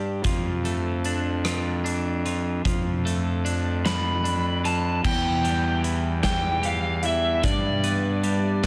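A slow 6/8 sway at 50 BPM carries this cathartic, cinematic post-rock fragment in D dorian, where a bright, twangy twelve-string electric guitar spins delayed arpeggios over a fuzzy, up-front fingered bass and a big rock drum kit with punchy kick and bright cymbals. At 3.9 seconds an overdriven slide guitar joins them with a high, delayed melody as the chords move from Dm/F to Em and G in a small, lightly reverberant room.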